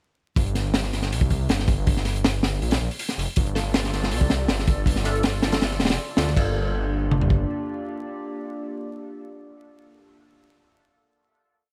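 A dry, close sound with vinyl crackle opens this short, frenetic and atmospheric drum and bass and jungle piece in G minor at 160 BPM, where a heavily chopped, crunchy breakbeat kit with a punchy kick, high-tuned snare and gritty, rolled-off top drives the drop from 0.4 seconds alongside a thick, menacing detuned saw bass playing a dub-style line. From 3.5 seconds a warbling, nostalgic lo-fi pad with chorus and reverb holds chords with syncopated pushes, while sparse, muted dub chord stabs sit in the background with phaser, analog chorus and dub echo. The harmony moves from Gm to Dm/G and arrives on a final Gm7 at 6.4 seconds; the drums and bass drop out around 7.4 seconds, and the pad and stabs ring on.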